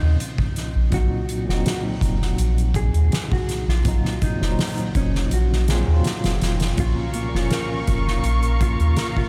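A mellow, dark electric guitar carries the melody through dub echo over a bright tine electric piano with tremolo, tape echo and gritty 12-bit sampler texture, while a round, deep sub bass sits up front in this smoky, brooding trip hop excerpt at 82 BPM, moving from Bb minor to a rootless Ab13 over F. A soft-mallet drum kit with a boomy kick and fat snare enters at 0.2 seconds in a big acoustic room. Near the end, veiled con sordino strings add sustained chords from 6.8 seconds as the harmony returns to Bb minor, and a ringing, fingerpicked Celtic harp joins with echoed arpeggios at 7.1 seconds, all within light studio reverb.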